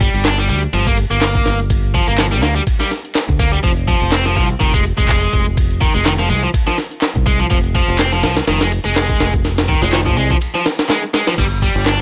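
A swung breakbeat groove drives this raw, swaggering passage. Up front sits a compressed, sampler-style kit with a thumpy kick and high-tuned snare in studio reverb, while a layered electronic house kit in the background adds bright hi-hats and handclaps pushed through overdrive. A direct fingered electric bass and a bright, picked overdriven electric guitar riff with analog delay move from G minor to F minor, landing on a G power chord at 11.4 seconds, all in a dry, gritty recording.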